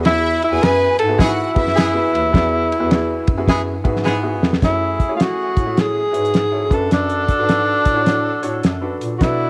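A breathy, whispered tenor saxophone carries the melody up front in this joyful, uptempo 1960s-style soul excerpt, its soft attack and scooped notes giving the line an intimate jazz feel at 105 BPM with a swung eighth-note groove in E mixolydian. Beneath it, a cloth-damped drum kit sits close and dry, with a fat snare, tight kick and dark cymbals from hi-hat and ride, and a drum fill arrives at 4.1 seconds just before the harmony moves from Eadd9 to F#m7. A mellow bass clarinet with light vibrato and subtone supplies the bass, while a woody upright piano fills in the accompaniment. A lush, bowed string section adds a focused second line only from 0.1 to 2.1 seconds, and a tight horn section with pop-style vibrato joins at 1.2 seconds, overlapping the strings briefly before carrying that role to the end. Light reverb gives the whole a small-room ambience, and the passage closes on D6/F#.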